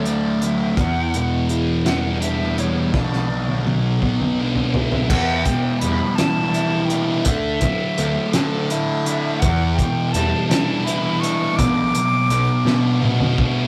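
A thick, double-tracked fuzz guitar opens this psychedelic rock excerpt together with a breathy, bright flute and an overdriven picked bass, setting a mysterious, trippy mood in E minor at a slow 56 BPM in a straight 6/8. The guitar sits up front with its heavy distortion swirled by a phaser, carrying the riff from low E2 up to F#4. Beneath it, the bass adds a gritty, amped growl in the low register. The flute's straight-toned, tongued melody floats above in the C#5 to D6 range with a slightly unsteady, airy quality, and it stops at 13.0 seconds, just before the others. A cloth-damped drum kit with a fat snare, tight kick and dark, rolled-off cymbals thuds along, with fills at 2.9 and 12.7 seconds. Chords cycle through Dadd9, Em7 and Bm, and the whole piece has the rough, lightly reverberant sound of a rehearsal room.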